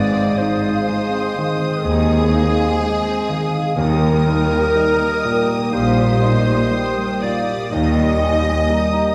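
The rhythm is free and rubato, breathing around a slow 62 BPM in 4/4, as this tender, hopeful passage of cinematic film score unfolds in Eb major, moving from Ab to Eb at 3.8 seconds. A violin section carries the melody high on Eb6, its bowed tone lush and smooth with vibrato, while a second violin section, a solo clarinet with a mellow, smooth top, and a pure, hollow flute section weave supporting lines beneath it. A felt-muted upright piano sits soft and intimate in the background, joined by a very quiet viola section and a dark, distant French horn section holding sustained chords. Cellos and double basses anchor the bottom with focused, bowed lines until 8.5 seconds, while the upper parts continue until 9.1 seconds. The whole ensemble is heard from further back in a wet scoring-stage reverb, giving the emotional fragment, cut from a longer piece, a spacious, glowing sheen.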